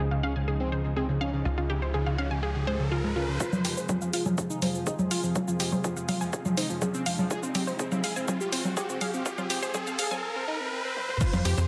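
Tape-warm, punchy analog drums re-recorded in a small room sit up front in this hypnotic, dramatic melodic techno excerpt in F minor at 123 BPM, where a thick, bold detuned sawtooth unison lead with vibrato and delay carries the melody over a bright, chorused background pad, detuned pluck arpeggios with digital delay and a filter sweep, a tight sawtooth sequencer bass that drops out at 3.4 s as the electronic kick enters for a build-up with a riser, moving from Dbadd9 to Fm and closing on a drum fill at 11.0 s, all in a lush hall reverb.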